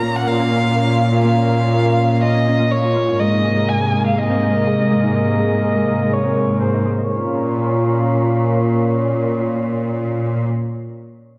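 Tense and vast, this cinematic cue in Bb minor moves at 123 BPM in a straight 4/4, its harmony shifting from Bbm to Abadd9 and back. A close, expressive solo violin carries the melody with vibrato and portamento over a mellow, detuned sawtooth pad with chorus and a low-pass filter, while a lush bowed cello section anchors the bass up front. A round, tine-like FM pluck with phaser traces quiet arpeggios beneath a filter sweep until 7.1 seconds, all set in a wet scoring-stage reverb with a heavily compressed, radio-like sheen.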